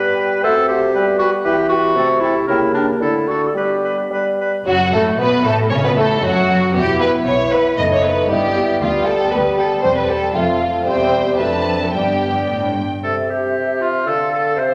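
A cheerful, spirited excerpt from a quick classical-period movement in 2/4 at 116 BPM opens in G major with clear clarinet and oboe, a hollow flute, a mellow bassoon and dark French horns in the background, before the strings enter at 4.7 s, lush violins carrying an expressive vibrato melody over a rich, up-front second violin line, very quiet violas, portamento cellos and background double basses, as the music moves to C major from 8.8 s in a reverberant recital hall with a rubato feel.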